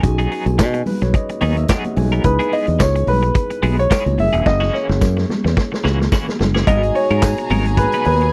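Sultry and glamorous, this swung disco groove at 108 BPM sets a natural grand piano melody with slapback echo over a growly, punchy fingered bass and a gritty, saturated vintage kit of tight kick, snare, hi-hat and handclaps, all in a dry, close 1970s-style room. A twangy, compressed clean electric guitar with tremolo and an overdriven tine electric piano with lush chorus fill in the harmony, the electric piano taking a fill from 0.6 seconds, while faint high-tuned congas and a jingly tambourine sit in the background and a drum fill arrives at 4.5 seconds. At 6.7 seconds a reedy, gut-string violin section adds a second line over dark, expressive strings holding sustained chords with vibrato and portamento, as the harmony settles on G#m9.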